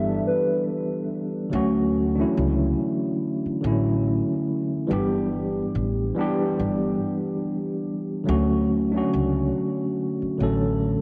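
A worn, slightly out-of-tune tine electric piano sits up front, lightly overdriven and heard as if through built-in speakers, carrying the accompaniment across the whole 11 seconds of this nostalgic, dreamy lo-fi hip hop fragment, cut from a longer piece. Beneath it, a pizzicato upright bass on gut strings gives a thumpy, woody low end throughout. A soft, hollow clarinet-like synth lead with vibrato and a mellow, full-bodied tone appears only briefly, from 0.0 to 0.6 s, treated with chorus, phaser, analog delay and a tape-like haze. The harmony moves gently between G6 and Dmaj7 over a lightly swung groove. A lush hall reverb and the soft wear of a home cassette recording wrap the whole mix in a hazy, intimate glow.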